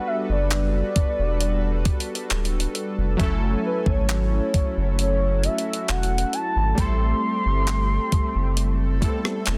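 A slow, straight 4/4 groove at 67 BPM settles in as a round, deep sine sub bass enters at 0.3 seconds, followed at 0.5 seconds by a clean 12-bit drum machine whose thumpy kick, hi-hat, rim click and handclaps sit up front with a tape-tinged, sampler-style edge. In this moody, late-night contemporary R&B cut from a longer piece, analog keys with detuned sawtooth tone, filter sweeps and chorus play decaying chords through Gmaj7, F#m7 and Am7, alongside a shimmering retro pulse-width pad that swells in with a slow attack. Above them a smooth portamento lead blending sawtooth and sine, colored by vibrato, chorus and delay, glides through the melody, and the mix sits in digital ambience with a dense, heavily limited modern master.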